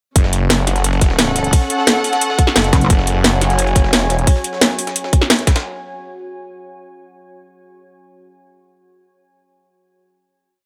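A snarling, detuned saw bass growls up front in chopped phrases over a tight, layered electronic kick, a cracking drum and bass kit with metallic hats and a gritty looped breakbeat tucked behind, while a dark, bowed string section pumps beneath, a pulsing pluck wobble bass flashes in briefly at 2.7 seconds, and a deep, moody pad adds sustained chords from 3.2 seconds in this tense, dark technical drum and bass drop.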